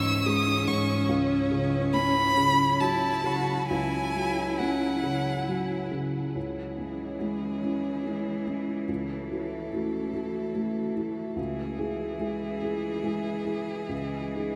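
In a rubato three-four, this melancholic, longing neoclassical fragment sets a rich, vibrato-laden violin melody from a single player over a clear, bowed cello second line, an intimate felt-muted upright piano accompaniment up front, and a warbling, lo-fi tape-like pad holding sustained chords, the ensemble heard in a vast, echoing space with a huge, wet reverb.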